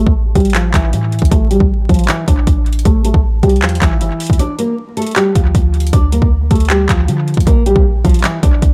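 A thumb-plucked nylon-string guitar carries the melody at the front of this eerie, melancholic hip hop and trap excerpt. Its dark, classical tone is shaded by a low-pass filter and tape echo, with a filter sweep across the first 4.4 seconds. Underneath, a clean 808-style bass supplies deep, boomy sine tones with a fast attack that decay into a mellow low end. A trap drum kit enters at 0.1 seconds and sits up front with a hard-clipped kick, metallic hi-hats and handclaps, moving in a half-time feel at 156 BPM in D minor. A break arrives at 4.4 seconds as the harmony moves from A5 to Dm, then to Bb at 7.5 seconds. The dry, echo-heavy mix carries a layer of vinyl crackle, and the clip is cut from a longer piece.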